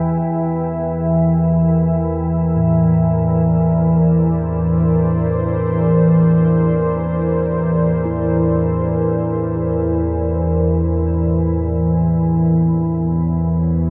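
Dark ambient drone with a dark, cavernous mood, cut from a longer piece. An organ-like drone sits up front from the start, its nasal, sine-and-triangle tone thickened by ensemble chorus, while a deep, moody pad sustains detuned sawtooth chords with a sub octave beneath, also up front and treated with chorus. At 2.6 seconds a quartz singing bowl slips in behind them, gradually fading in with pure, ringing arpeggios struck with a suede striker, its slow beating tone close-miked, dry and trailed by delay. The harmony rests on A#add9/E before moving to B5 at 12.1 seconds. A huge, wet reverb with a long tail wraps the dark, warm production in a cavernous haze until the cut at 13.9 seconds.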